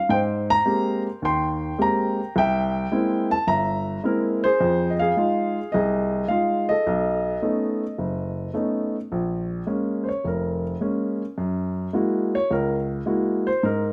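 Intimate and up close, this short solo jazz piece sits in light reverb, the upright piano placed up front with audible action noise and a woody, vintage character. The mood is late-night and smoky, moving at a relaxed 106 BPM in 4/4 with a swing feel on the eighth notes. The lone upright piano spans a broad range from F1 to C6, its smooth tone and long sustain letting the chords ring. The harmony opens on Abmaj9 and passes through C7b13, Fm7 and B9 before a new section begins at 9.1 seconds, shifting to Bbm7 and then Gb9. Cut from a longer piece, it ends at 13.9 seconds, leaving the impression of a pianist playing alone in a dim, quiet room.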